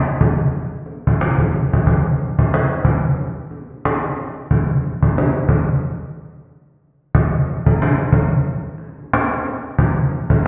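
Relaxed and smooth, this short R&B excerpt cut from a longer piece moves at 91 BPM in 4/4 with a gentle swing on the sixteenth notes. A lone cajon carries the whole groove, entering at 0.2 seconds and playing through to 10.4 seconds, its woody, acoustic tone edged by faint snares. The sound is muffled, as if heard through a wall, and set in a stone room with a moderate plate reverb whose 2.3-second tail gives the drum a distant, large-room feel. A break arrives at 5.8 seconds, and the music moves into a new section at 7.1 seconds.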